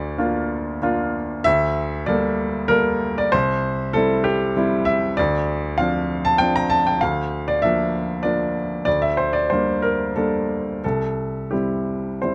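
In a rubato 3/4 that drifts between 83 and 100 BPM, this brief passage of neoclassical minimalist piano, cut from a longer piece, feels intimate and reflective. A lone baby grand, warm and natural with a short sustain, sits up front and spans C2 to Bb5, cycling through Bb/D, Gmadd9/D, C and Dm7 before returning to Bb/D at 7.0 seconds. Close, detailed microphones and little reverb keep the sound dry and near, and the piano is tuned to A4 = 442 Hz.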